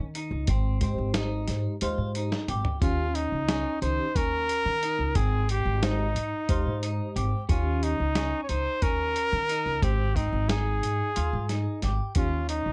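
Set in a lopsided 7/8 with a straight feel, this progressive instrumental excerpt alternates between Abmaj7 and Eb7 in an intricate, bright mood. A dusty, sampler-style drum kit sits up front with a thumpy kick, medium-tuned snare, hi-hat and toms. Its gritty, tape-warm sound is compressed and re-recorded in a small room, and a drum fill at 2.3 seconds leads into the next section. Pizzicato upright bass, woody and close, anchors the low end, while a clean, picked electric guitar traces arpeggios through a phaser, and a tine electric piano, run through a combo amp with an ensemble chorus, fills in the accompaniment. From 2.8 seconds a warm trumpet takes the solo melody up front, singing with pop-style vibrato over light reverb in a dark overall production.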